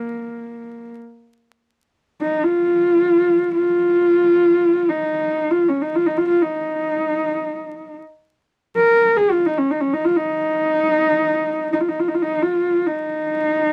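A solitary horsehead fiddle, dark and husky with a woody body and a smooth top, carries this solemn, windswept passage of Mongolian folk music in free time. Its bowed horsehair strings sing with vibrato and portamento, staying up front across the 13.7-second fragment cut from a longer piece. The dry, close sound of a 1970s-style studio is touched with light reverb and the faint crackle of vinyl.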